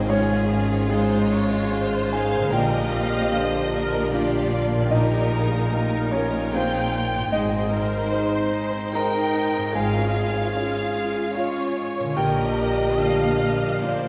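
A grand piano carries the accompaniment across a broad range in this uplifting, moving orchestral film cue, set at a rubato 75 BPM in 3/4. Two bowed violin sections share the upper strings. A very quiet one with a smooth top carries the melody, while a lush second line sits above it, joined by an expressive viola section with vibrato and portamento. Beneath them, a distant cello section and a rich double bass section hold the bass, while a dark French horn section sustains chords in the background alongside a mellow, soft-attack clarinet line. A very quiet, fingerpicked concert harp adds ringing arpeggios as the harmony moves through Db over Ab, Bb, Ebadd9 over Bb and Ab. A wet church reverb surrounds the 14.1-second passage, which is cut from a longer piece, and gives it a spacious, emotional glow.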